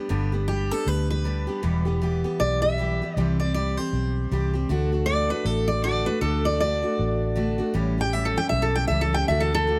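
A swung 4/4 at 156 BPM drives this nostalgic, heartfelt honky-tonk and classic country excerpt in G major, cut from a longer piece, with a round, foam-muted vintage electric bass sitting dark and up front beneath a bright, picked dreadnought acoustic guitar playing accompaniment from the start. At 0.5 seconds a second picked steel-string guitar takes the melody as a solo, its full-bodied tone carrying audible finger squeak through a progression moving from G through Em, C and D to an A7 near 7.8 seconds. The close, detailed miking and dry room keep every part intimate and present.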